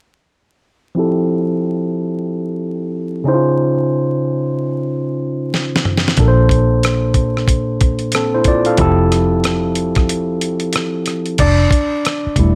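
A barky, overdriven tine electric piano played through a combo amp opens this sensual, soulful neo-soul and R&B excerpt at 92 BPM in F major, entering at 0.9 seconds with lush chords from Fmaj9 through Dbmaj9 and Bbmaj9 under a long filter sweep. A dusty, sampler-style drum kit with a thumpy kick and fat snare arrives at 5.5 seconds with a fill, and a dark, round, foam-muted electric bass joins at 6.2 seconds, all carrying a swung sixteenth-note feel. After a break, the electric piano takes a short solo from 11.4 seconds, with light reverb and vinyl crackle giving the whole a lived-in, vintage air.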